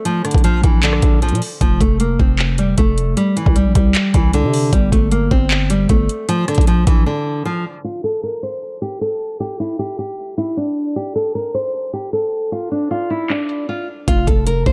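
A half-time trap beat at 154 BPM in F major, with knocking kick, metallic hi-hats, handclaps and rim clicks up front, drives this dreamy, triumphant hip hop fragment, where a warm fingerpicked nylon-string guitar carries the melody over Bb, F5, Csus2 and Gsus2 while a growling, buzzy 808-style bass drops out at 7.1 seconds, a filter sweep runs from 7.8 seconds until the bass returns at 14.1 seconds, all in a dark, dry mix.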